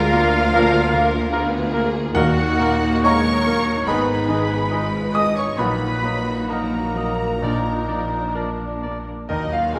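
A brooding, tragic passage from a romantic classical movement for piano and orchestra, cut from a longer piece, moving in a rubato 4/4 at roughly 62-76 BPM in Eb minor. A clear, vintage-toned grand piano carries the melody with short sustain, joined by a distant, bowed violin section with soft attack, while a second violin section, a flute section with rolled-off highs, a close-miked clarinet and a cor anglais with a smooth top weave second lines. A close viola section with portamento and a mellow bassoon fill the accompaniment, and focused cellos and a smooth double bass section anchor the bass. A loose trumpet section adds stabs, and from 0.5 seconds a dark, roomy trombone section and a tight French horn section hold sustained chords very quietly. Round timpani struck with soft mallets on calf heads sound from 2.2 to 8.8 seconds. The harmony moves from Bb/D through Ebm and Abm to Ebm/Bb and on to Bb, all bathed in a wet scoring-stage reverb.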